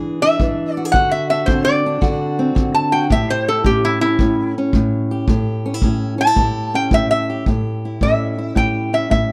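Gritty and soulful, this acoustic country blues excerpt swings at 110 BPM in A mixolydian, moving through E7, D7 and A7. A lap resonator guitar carries the melody up front with a metallic, nasal slide tone, taking a steel-bar solo until 7.5 s, when the music shifts into a new section. Beneath it, a fingerpicked steel-string acoustic guitar accompanies from the first moment, and a distant, tight kick drum, played with brushes, enters at 0.4 s in a roomy studio space.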